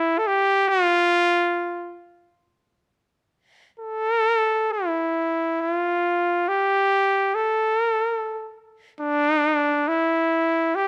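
A solo trumpet opens this Caucasian folk lament, its clear, classical-style tone placed up front as it moves in free time between D4 and A4. The mood is mournful and full of longing, with the single horn carrying the whole passage for its 10.9 seconds. Close, detailed microphones and a light reverb frame the playing in this short section cut from a longer piece, tuned to A4 = 439 Hz.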